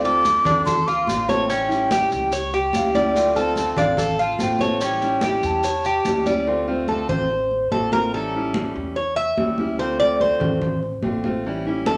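Latin Cuban son in a guajira vein, sultry and nostalgic, with a breathy, hollow flute carrying the melody until 6.3 seconds over picked acoustic guitar with audible finger squeak, growly pizzicato upright bass, ringing high-tuned congas and grainy, vintage maracas that drop out at 6.5 seconds, when the bright, metallic tres, up front with its doubled strings throughout, takes a solo over alternating Dm7 and A7 chords in a reverberant large studio.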